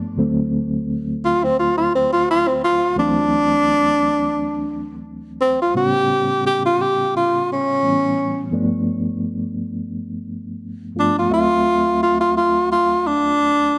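A lightly swung 86 BPM pulse in 4/4 carries this gritty, soulful blues excerpt in D mixolydian, moving through D9, A9 and G9 chords. A reedy, mellow electric piano with fast tremolo lays down the accompaniment from the start, heard through its built-in speakers. At 1.2 seconds a breathy, whispered tenor saxophone enters up front with the melody, close-miked and intimate in a subtone jazz style with light vibrato and a soft attack, all set in light reverb.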